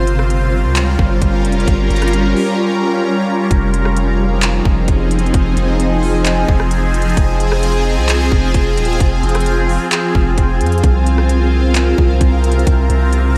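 A shimmering ambient pad fills this hazy, spacious cloud-rap excerpt. It holds sustained chords with a bright, ethereal octave-up shimmer, a granular texture, a slow attack and a long release, and it is colored by chorus, phaser, its own reverb and sidechain pumping. Beneath it, a deep, mellow 808-style bass sits up front with a sine tone, a fast attack and long, decaying notes. A produced electronic trap kit arrives at 0.1 s in a half-time feel, with a hard-clipped kick, crisp hi-hats, handclaps and rim clicks. The harmony opens on Gm7b5, settles onto Fm7 at 3.5 s and turns to C7sus4 at 10.8 s, all within a dreamy mix soaked in a moderate church reverb.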